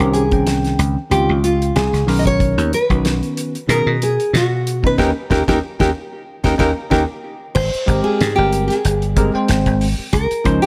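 Soaring and funky, this electric jazz fusion fragment sets an up-front, full-bodied fingerpicked nylon-string guitar melody over a bell-like tine electric piano with lush chorus, a punchy, foam-muted thumbed slap bass and a dry 70s drum kit with a fat snare and tight kick, all in light small-room reverb, as the band accents together from 5.0 s and a drum fill leads into the Abmaj9 arrival at 7.6 s.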